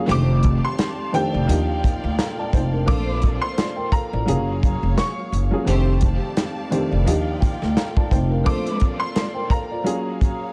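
A warm soul drum kit with a punchy kick, handclaps, hi-hat and a medium-tuned snare sits up front in this confident, soulful boom-bap hip-hop excerpt at 86 BPM in Bb major, swung on the sixteenths. Alongside it plays a thumpy, woody pizzicato upright bass on gut strings, and a dark, mellow upright piano with cassette-tape grit and audible action noise plays the accompaniment over F13, Ebmaj9, Bbmaj9 and Gbmaj7 chords. A second, brilliant and slightly detuned upright piano carries a high melody through tape echo, while focused, close string stabs, also tape-echoed, and distant, expressive sustained strings with portamento add lush depth, the stabs stopping at 8.9 seconds.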